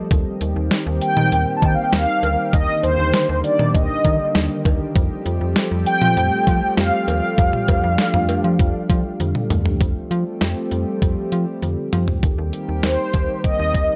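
A dry, gritty hardware recording in a digital ambience, its top end capped at 10.8 kHz, opens this nostalgic, upbeat synth-pop excerpt at 99 BPM in Eb lydian, moving from Eb6 to Fadd9 and back. A lush, thick, warbling pad with chorus holds sustained chords beneath a snappy, metallic FM bass and an overdriven, detuned 8-bit drum machine with a thumpy kick, cowbell, hi-hat, snare and toms sitting up front. A round, brassy synth lead with chorus, analog delay and vibrato carries the melody from 1.0 seconds, drops out at 9.2 seconds as the drums play a fill, and returns at 12.8 seconds.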